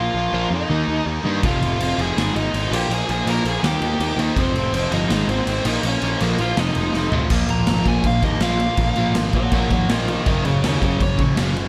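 An upbeat, rebellious punk rock excerpt at 163 BPM opens with a dark, smooth overdriven lead guitar melody over bright, double-tracked distorted guitar riffs and a punchy fuzz bass, joined at 0.3 seconds by a crunchy guitar tucked in the background, before a gritty, up-front garage drum kit in a pumping stone room enters at 1.4 seconds, playing half time until a fill leads into the lead guitar solo at 7.3 seconds.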